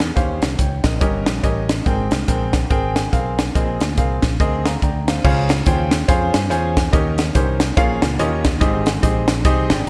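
A crisp, airy, polished fusion drum kit leads this jubilant, hopeful uptempo gospel passage at 142 BPM in swung 4/4, its high-tuned snare, punchy kick, hi-hat and crash sitting up front with gated reverb. A bright, direct fingered electric bass holds the low end while a clear grand piano enters at 0.2 seconds with rich Eb major harmony such as Eb13 and Abmaj9, playing a fill at 4.6 seconds before the music moves to Dbmaj7 at 5.2 seconds. A moderate, lush hall reverb and bright 1980s-style digital production give this short cut from a longer piece a gleaming finish.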